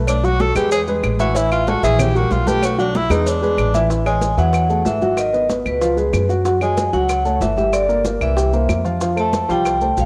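Captured on home cassette in a small room with light reverb, this sunny, lively Afro-Cuban jazz passage opens with a breathy, subtone tenor saxophone solo over dark, mellow grand piano and a thumpy, gut-string upright bass up front. Woody claves, ringing high-tuned congas and very quiet cowbell and bongos sit in the background, joined by grainy maracas, until a metallic, dry vibraphone takes the melody at 4.1 seconds.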